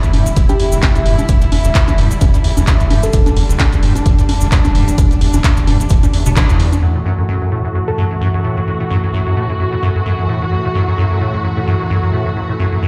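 A punchy analog kick and a drum machine of congas, handclaps and hi-hat drive a swung 4/4 groove, with a grainy cabasa tucked in the background, in this hypnotic, trippy acid house excerpt. Up front, a squelchy, resonant square-wave acid bass riff carries lush chorus and dub echo. Beneath it sits a round, deep analog bass with tube saturation, while a dark chamber string section holds smooth bowed chords with vibrato and sidechain pumping, and a gentle, keys-like FM lead adds brief figures coloured by 12-bit sampler grit and digital delay. After a band accent at 6.4 seconds, the beat, cabasa and round bass fall away by 6.8 seconds. The acid riff and strings carry on, joined by a brief return of the lead, as a filter sweep runs over the strings to the end.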